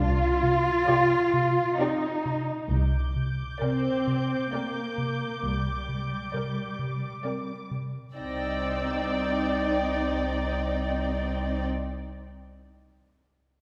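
A cinematic suspense score fragment in C minor, this ominous, eerie cue moves slowly at 66 BPM in 3/4, cut from a longer piece. A round, deep analog bass carries a riff from the start, sustained with a fast attack, while muted double basses and cellos, bowed con sordino, sit up front as a dark, veiled foundation. At 0.9 s muted violins enter on a distant melody and a closer second line with a soft attack, joined by violas in a lush, close accompaniment. A higher violin texture drifts in at 2.7 s, dark and lush with vibrato, as the harmony shifts from Cmadd9 to Gm/C before returning to Cmadd9 at 8.2 s. The strings are heard from further back in a reverberant scoring stage, giving the ensemble a shadowy, suspended atmosphere.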